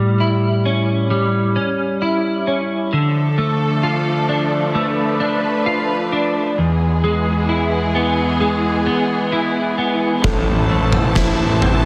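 Melancholic and cathartic, this slow post-rock excerpt in A harmonic minor at 66 BPM opens with clean, compressed electric guitar arpeggios over A7, carrying ensemble chorus and slapback echo. Lush, vibrato-rich bowed symphonic strings join at 2.9 seconds over Dm and E chords, before a fuzz-overdriven fingered bass, an oversized low-tuned drum kit with a fat snare and punchy kick in a bright, pumping stone room, and a soft felt-muted upright piano with audible action noise arrive together at 10.2 seconds on Am, all set in a lush hall reverb.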